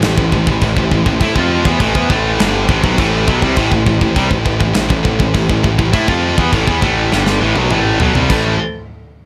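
A heavy high-gain guitar sits up front with a bright, picked riff, joined by a compressed, distorted electric guitar further back, both ranging from G2 to F4. This short, dark heavy metal excerpt moves at 102 BPM in a straight 4/4 feel, resting on an A minor chord throughout. Beneath them, a growly fuzz bass, direct and amped with overdrive, holds the low end between G1 and A2. A tight metal drum kit with a big-room sound, gritty saturation, a medium-tuned snare and glittering china and crash cymbals drives the passage, closing with a fill from 7.1 to 8.3 seconds. In the background, a veiled, con sordino string section sustains soft-edged bowed chords with vibrato, adding a shadowy layer under light reverb.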